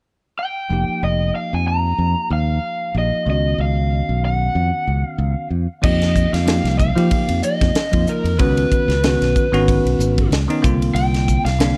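A dark, intimate small-room sound frames this intense, slick stretch of electric jazz fusion, cut from a longer piece and moving at 94 BPM in 4/4 with a light swing on the sixteenths. An overdriven lead guitar, picked through a small cranked amp, carries the melody up front from 0.4 seconds, staying between Bb4 and Bb5. At 0.7 seconds a bell-like, clean tine electric piano joins as accompaniment, while a growly, direct fingered electric bass sits forward beneath it. The harmony moves between F9sus4 and Db9sus4, reaching C9sus4 near the close. A crisp, polished fusion drum kit arrives at 5.8 seconds with a high-tuned snare, tight kick, hi-hat, ride and crash, its airy studio sound adding drive to the second half.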